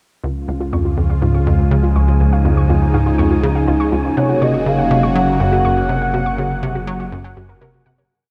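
A swirling, phased analog pad sits up front in this cosmic, luminous ambient space music at 122 BPM in Gb lydian, set over a tight, punchy sequencer bass riff looping in seven steps that drift against the bar and a round sine sub bass, with a dusty, warbling pluck arpeggio with tape echo in the background, an airy, wind-like noise texture arriving at 1.0 s, and a smooth, expressive portamento lead tracing arching phrases with vibrato from 4.2 s, the whole piece heard in a vast, echoing space with cassette tape character before a fade-out beginning at 5.5 s.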